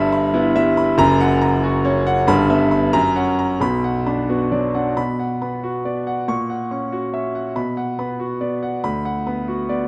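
A clear concert grand piano, up front with a deep bass and long sustain, carries this stormy, agitated classical virtuoso study on its own, spanning from low F#1 to high C#6. The rubato in 6/8 gives the harmony a restless push as it circles between Em/G and F# before settling onto Bm around 3.6 seconds, then moves through F#7/A# back to Bm. A moderate concert hall reverb lends the natural piano tone space in this brief passage cut from a longer piece.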